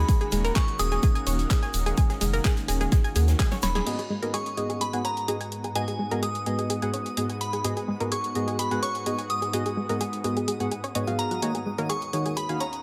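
Dreamy yet driving, this progressive house passage in G# minor moves at 127 BPM in a straight 4/4, opening on D#m7 with a crystalline FM synth bell melody, a shimmering ethereal pad, and a chorused analog pluck arpeggio, all pumping or echoing with digital delay, over a round, dark analog bass, a punchy tape-warm electronic kick, an overdriven deep house kit of claps, hats, snare and crash, a very quiet acoustic jazz kit with shaker, and a grainy, distant tube shaker. Around a drum fill and a band accent, the kick, bass, jazz kit and tube shaker drop away, and at 3.9 seconds the harmony shifts to G#m7 as a soft, evolving chord stab comes up front, joined by a twinkling granular texture and a detuned, digital wavetable pluck in the background. The pumping layers carry on under light digital ambience until the chords return to D#m7 at 11.4 seconds.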